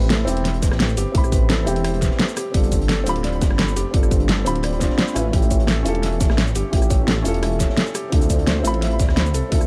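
Soulful and lush, this short cut from a longer liquid drum and bass piece moves at 172 BPM in A minor, its chords drifting from Am9 through G9sus4 and A7b13 to Dm9. A dark, intimate grand piano carries the accompaniment with audible action noise and a vintage character, while a soft, felt-muted upright piano plays arpeggios in the background, both parts touched by digital delay. Up front, a deep, rumbling detuned saw bass with a beating, saturated tone anchors the low end. The drums stack three layers: a pop kit with a fat snare, cabasa and rim click sits forward, a punchy electronic kick enters at 0.6 seconds, and a crunchy, gritty breakbeat kit with a high-tuned snare and rolled-off top lies further back, its hats, snare and room all high-pass filtered. A small room ambience surrounds the mix, giving the whole a close, mellow glow.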